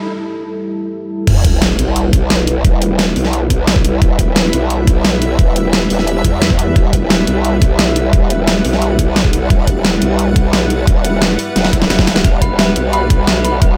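Straight 4/4 drums at 175 BPM drive this aggressive, futuristic slice of dark technical drum and bass in E minor, as a knocking electronic kick and a tape-warm kit with a huge snare, bright hats and crashes slam in up front at 1.3 seconds alongside a sub drop and impact. A growling, wobbling formant-filtered bass with overdrive and chorus snarls low beneath a deep, moody sawtooth pad that pumps to the sidechain in the background, joined from 2.9 seconds by a blurred, evolving granular cloud pad steeped in its own reverb. After a drum fill and swell, an eerie, inharmonic FM bell arpeggio with warbling chorus and delay surfaces at 12.2 seconds before the cut.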